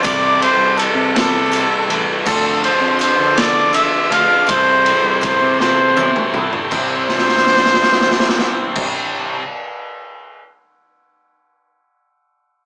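Jangly and upbeat, this short indie rock excerpt moves at 54 BPM in a straight 6/8, set in C major over chords of Am7/C, Dm7 and Cadd9. A bright, up-front trumpet carries the melody with pop-style vibrato and a smooth top, while a very quiet, shimmering FM bell traces a dreamy, detuned second line above it, haloed by ensemble chorus and phaser. Beneath them a tonewheel organ holds soft, clean chords through a slow rotary speaker, its key click audible, and two background guitars play riffs: a scooped, high-gain distorted electric and a twangy, compressed twelve-string. A fuzzy, overdriven picked bass anchors the low end, and a raw garage drum kit sits up front with a punchy kick, medium-tuned snare, gritty saturation and a pumping small-room sound, adding fills around 5.6 s and 7.1 s. A jingly tambourine rides in the background, and the whole band plays live in one room with moderate reverb and a small-speaker character, the drums ringing on alone until 10.4 s.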